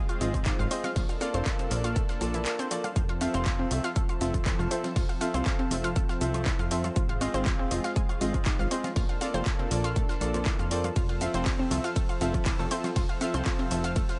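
Expansive and uplifting, this progressive house excerpt moves at 120 BPM in F major, cycling through Ab6, Bbmaj7 and Fmaj7 chords, with a punchy, up-front electronic kick anchoring a layered big-room dance kit of handclaps, hi-hat, ride and shaker, plus a very quiet, gritty breakbeat sampler-style kit and faint woodblock and congas recorded in a small room. A funky, sawtooth-and-pulse analog bass and a round, nasal, detuned analog pluck spinning arpeggios drive the groove, both pumping to the sidechain, while the pluck and a clear, boxy grand piano playing stabs trail dub echoes. Behind them sits a lush, airy unison pad of sustained chords with chorus and vintage 12-bit sampler grit, all held in a digital ambience.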